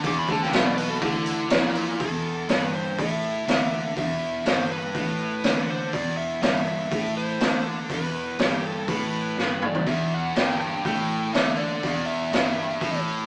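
A biting, overdriven lead guitar spans E4 to D6 over a heavy, driving hard rock groove in E minor at 122 BPM, cut from a longer piece, where crunchy and scooped high-gain rhythm guitars churn out the riff in the background alongside a foam-muted picked bass, a double-tracked tight distorted guitar joins at the start and returns at 9.9 seconds, and a gritty, boomy garage drum kit sits up front with a fill at 9.4 seconds, all heard as a band playing live in one room through a small speaker.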